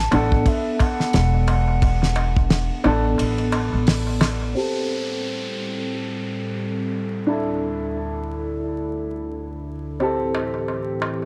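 Trip hop in A dorian at 88 BPM, with a 16th-note swing, this brooding, hypnotic fragment of a longer piece sits in a dark production dusted with vinyl crackle and light reverb. It opens with an airy, distant wooden flute line carrying tape echo and vibrato, over a thumpy, woody pizzicato upright bass with tube saturation and a dry, damped 70s kit with a fat snare, tight kick, hi-hat and ride in a small room. A crisp metal-shell darbuka adds small, high accents, and a clear, up-front upright piano accompanies through harmonic tremolo, a low-pass filter and tape echo. Around 4.6 seconds the groove drops away as an electronic downlifter descends, and at 5.1 seconds a warbling, nostalgic tape-like pad with chorus and a slow attack enters beside the piano, both under filter sweeps. The chords move from Bm7 to Am7 and Dsus2 before settling back on Am7, where the darbuka returns at 10.0 seconds.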